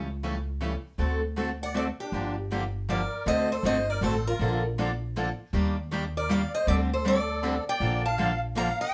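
Acoustic jazz manouche swing in a bittersweet triple-metre lilt, this excerpt opens with two picked steel-string guitars (one boxy parlour guitar up front, another pushed into the background) and a woody, thumpy pizzicato upright bass on gut strings, before a warm concert guitar with audible finger squeak takes the melody at 1.6 seconds alongside a reedy, shimmering musette accordion second line, all captured live in one room with moderate studio ambience.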